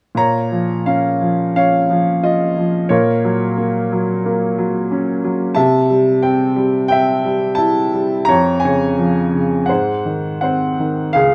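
Up front and closely captured with a light reverb, a clear, woody upright piano with a vintage character and long sustain plays alone from 0.1 to 11.3 seconds in this short, cool and moody excerpt of lyrical classical solo piano, its rubato phrasing moving through chords in B-flat minor that settle on a dominant seventh at 9.7 seconds.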